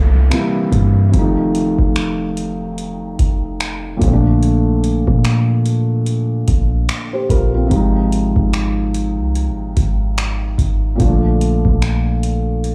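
A swung sixteenth-note groove in 4/4 settles in as a booming analog drum machine enters at 0.3 seconds with finger snaps, metallic hi-hats and a deep kick, sounding re-recorded in a large room and placed up front. This short cut from a longer contemporary R&B piece feels smooth and romantic: a felt-muted upright piano, soft, mellow and intimate, moves through C7, F7 and Bbmaj7 chords over a clean, sine-like 808-style bass with a fast attack and dark, boomy decay. An electronic downlifter sits in the background until 4.4 seconds, and the whole mix has a dry, gritty cassette-tape character with a hint of studio ambience.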